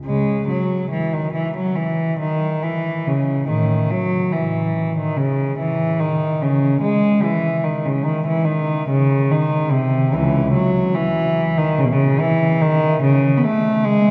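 This is classical music, a baroque-style suite movement for solo cello, taken from a longer piece and lasting 14.1 seconds. The mood is serene and flowing, and the playing moves at 72 BPM with uneven beats and rubato over a 4/4 metre. One player bows a cello with a dark, gut-string tone in period style. The sound is nasal and reedy with a smooth top and light vibrato, and it stays between C#2 and B3. The cello sits up front while a long cathedral reverb of 5.2 seconds surrounds it, giving the sense of a listener further back in a resonant stone space. The instrument is tuned slightly below modern pitch, to A4 = 438 Hz.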